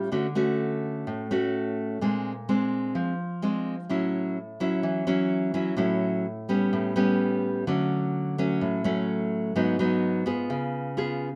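A fingerpicked nylon-string guitar plays alone from the start, setting a romantic, sunny bossa nova mood in a straight 4/4 feel. Its acoustic tone is full-bodied and warm, with a deep classical character, and it sits up front in the mix, with finger squeaks audible along the strings. The harmony opens on Dmaj7 and moves through Bb9, A6 and A9, spanning from G#2 up to G#4. At 7.7 s a new passage returns to Dmaj7 before turning toward G#m7 and C#7, and the piece is cut off at 11.4 s. Moderate studio reverb gives the guitar a sense of a live room, and the instrument is tuned to A4 = 441 Hz.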